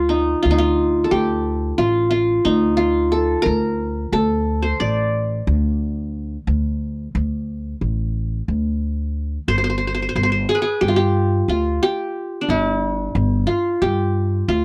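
A dry, close recording with a 1970s studio character and only light reverb frames this soulful, hypnotic fragment of Turkish makam ensemble music, moving in a straight 9/8 at 180 BPM counted in eighths. Up front, the qanun carries the melody between D4 and D5 with a bright-edged, fingerpicked sound from its triple strings, while the pizzicato upright bass, woody and steel-strung, holds the low line from G1 to G2. Both play throughout, and the mode shifts from D makam kurdi to G makam hicaz at 9.5 seconds.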